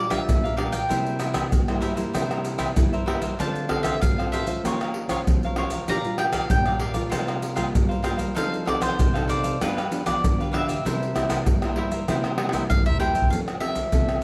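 This samba and choro piece has a sunny, festive mood, moving at 97 BPM in a straight 4/4 and tuned slightly below standard pitch to A4 = 438 Hz. A picked mandolin carries the melody with a round tone from its double strings, set against the crisp picked chords of a cavaquinho and the fingerpicked warmth of a classical nylon-string guitar. Underneath, maracas, pandeiro, tamborim and a deep surdo played with soft hands sit up front in the mix. The harmony travels from Bb6 and C7 through Dm7, Bbmadd9 and Gm7/Bb, then C7sus4, F7, G7 and C7 before landing on F. A drum fill starting at 12.4 seconds closes the phrase, and the cavaquinho stops at 13.3 seconds while the mandolin, guitar and percussion carry on briefly. Light reverb and a layer of vinyl crackle color the sound, and the passage is cut from a longer piece.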